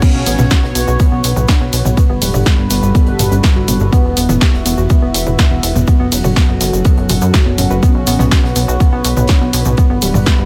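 A straight 4/4 pulse at 123 BPM drives this dark, cinematic melodic techno in B minor. A punchy, up-front electronic kick leads the groove alongside a tape-warm analog drum machine's crash, hi-hat, snare and toms, a very quiet, airy big-band kit and a grainy cabasa, while a funky, ring-modulated analog bass pumps against the kick. Above them, a woody, wave-folded pluck spins arpeggios under a filter sweep, a fat, detuned lead carries a mellow melody with tape echo in the background, a bright, resonant pad holds chords moving through B5, G, E5 and F#m, and a nasal analog drone joins at 0.7 seconds, all in a dry sound.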